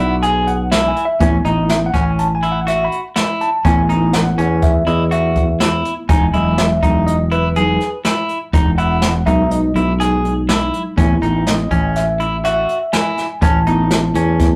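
Progressive instrumental band music in a straight 5/4 at 123 BPM, brooding and driving, where a worn, slightly out-of-tune tine electric piano with light overdrive solos throughout over a growly, up-front fretless bass, clean, picked, compressed semi-hollow guitar arpeggios, and a distant, roomy brushed drum kit with boomy kick that enters at 0.2 s, moving through E, Asus2, Emaj7 and back to Asus2 in a rough, tube-saturated rehearsal-room sound with a short, wet small-room reverb.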